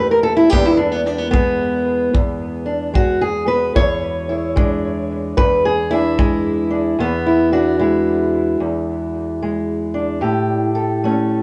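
A dark, boxy fingerpicked parlour steel-string acoustic guitar with tape echo carries the melody up front through this soulful, laid-back acoustic country blues in E mixolydian at a swung 74 BPM, moving from A7 to E7 and back to A7, while a punchy brushed kick drum sits behind it from 0.5 to 6.4 seconds in a reverberant studio room heard from further back, with a muted top end.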